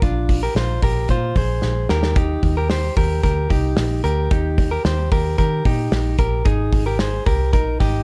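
A clean, compressed electric guitar, recorded direct and sitting up front, picks arpeggios through this youthful, nostalgic cut from a jangly indie pop piece at 112 BPM in Eb major, moving over Bbadd9, Eb and Absus2 chords. Beneath it, a round, foam-muted picked bass and a loose, up-front acoustic drum kit, with a punchy kick, medium-tuned snare, pumping room sound and rolled-off top, hold a straight 4/4 feel, with a drum fill at 1.6 seconds. Small room reverb and a dark, warm production give the whole a snug, intimate glow.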